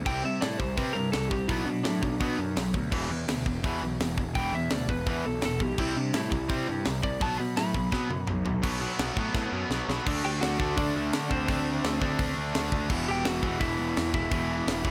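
A lightly reverberant studio sound frames this urgent, aggressive punk rock excerpt at 168 BPM in E minor, where a growly, fuzz-soaked picked bass and a tight metal drum kit with a high-tuned snare sit up front, two bright overdriven guitars play riffs in the background, and a dark, slightly broken-up lead guitar solos for the first 8.6 seconds over chords moving from C5 through Bm and E5, with drum fills at 7.9 and 9.4 seconds.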